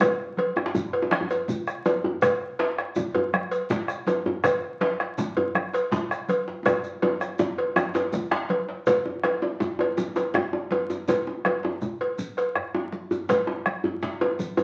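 A metallic cowbell rings up front through this earthy, festive West African drum ensemble, set in 12/8 at 108 BPM counted in dotted quarters with a straight feel. Beneath it a deep, dark bombo sits close and dry, while one medium-tuned djembe, played with soft hands in a live room, stands up front and a second djembe sits further back in a small room. Bright, thin-skinned congas struck with hard hands add a close, sharp edge, and a grainy, mellow shekere lingers faintly in a band-limited, vintage tone. All six parts play throughout the 14.6-second cut, which comes from a longer piece and repeats the same section twice, with a drum fill from 6.7 to 8.9 seconds leading into the return. The whole performance carries a wet studio reverb and the crackle of a very old 78 rpm record, lending it an aged, dusty character.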